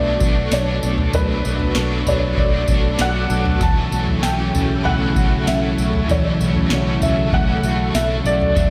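Melancholic and ethereal, this dream pop excerpt moves at a straight 97 BPM in 4/4 over Bm7 shifting to F#m7/B at 3.6 seconds, with a felt-muted upright piano carrying the melody in soft, intimate tones with audible action noise and diffuse ambient delay. An overdriven electric guitar adds bright, picked accompaniment through tremolo and ensemble chorus, a silky string machine holds slow-attack sustained chords, and a mellow, dark, clean guitar plays arpeggios in the background with lush chorus and delay, while a round, foam-muted fingered bass sits on B1. A booming analog drum machine with deep kick, crisp snare, tambourine and toms enters at 0.2 seconds, a very quiet glockenspiel adds sparkling bell-like glints, and the mix is soaked in a wet hall reverb.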